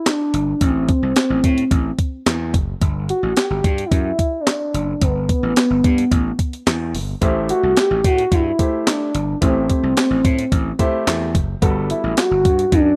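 A gliding portamento lead sits up front in this early-eighties boogie funk excerpt, its smooth, mellow tone blending sawtooth and sine with chorus, phaser and vibrato as it carries the melody from start to finish. Underneath, a clean 12-bit drum machine supplies a thumpy kick, medium-tuned snare, handclaps and hi-hat with a tape-warm, sampler-style character, while a gritty slap bass adds growly, punchy overdriven lows. At 7.2 seconds a grand piano joins as accompaniment, intimate and natural with audible action noise, and it drops out at 12.3 seconds. The groove moves at 109 BPM in a straight 4/4, set in A dorian over Am and G before shifting to Am7 and Gmaj9. Light reverb and a rough home-demo mix give the danceable, late-night mood an unpolished edge.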